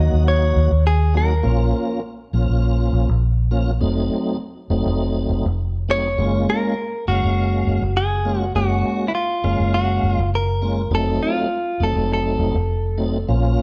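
A smoky, soulful slice of straight-eighth soul blues at 101 BPM opens with tonewheel organ, muted electric bass and clean electric guitar sounding together, the band playing live in one moderate stone room. The organ carries the accompaniment throughout, full and lightly overdriven, its chorus vibrato and slow rotary speaker adding motion while a touch of key click colours the attack. Underneath, the fingered bass is dark, round and punchy, its foam-muted tone sitting prominently at the front of the mix. The direct-recorded guitar picks a clean, compressed melody in its upper-middle register, drops out at 2.0 seconds, and returns at 5.9 seconds to carry the line onward. The harmony moves from Ebm through Bbm and a tense F7b9 to a lush Gbmaj7 before settling back on F7b9, giving this short cut from a longer piece a brooding, late-night glow.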